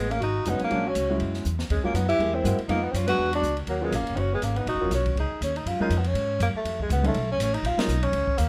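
Small-group swing and bop jazz in Eb minor at a brisk 243 BPM, this late-night, cool excerpt sets a mellow, distant tenor saxophone melody with vibrato and plate reverb against a breathy, whispered alto saxophone second line that stops at 5.5 seconds, while a woody, dark pizzicato upright bass sits up front, a slightly detuned upright piano comps from 0.5 seconds, and an airy drum kit with dark cymbals and a boomy kick adds a fill at 1.4 seconds and joins a band accent at 7.8 seconds, all in a moderate club reverb.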